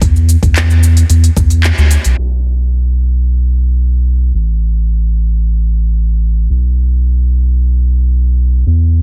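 A round, deep analog bass sits up front from the start with a gritty, thumpy sampler-style kick and an overdriven electronic kit of smooth hats, cabasa and handclaps in this hypnotic, meditative organic downtempo groove at 111 BPM, where the kick drops out around a band accent at 1.6 seconds, the kit stops at 2.2 seconds, and the dark, sustained bass carries on alone beneath a filter sweep until 9.0 seconds in a dense, dry, heavily limited mix.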